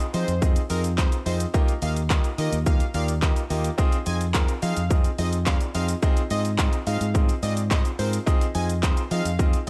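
Dance-pop at 107 BPM in F minor, driving and energetic, this gritty, dry snippet of a longer piece sets a layered house drum kit of overdriven punchy kick, handclaps, hi-hat and shaker up front beside a direct, amped fingered electric bass, while an intimate concert grand piano with audible action noise and long sustain carries chords moving through Fm7, Ebadd9 and Ab6, and a catchy, bright detuned-sawtooth unison lead with vibrato sings the melody, with the piano, bass and lead pumping under sidechain compression.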